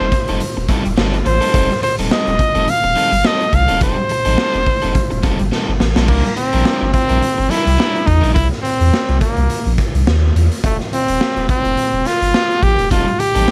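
A breathy, vibrato-tinged jazz-style trumpet solos up front from the first moment over crunchy overdriven electric guitar and a deep, thick, saturated sub bass, with a gritty, punchy-kicked garage drum kit in a bright stone room joining a moment later to drive this energetic, strutting funk excerpt at 106 BPM with a lightly swung 16th feel, shifting from F9 to C9 at 6.1 s after a drum fill that begins at 5.5 s and back to F9 while the guitar drops out at 8.3 s and returns at 12.9 s, the dry mix topped with vinyl crackle.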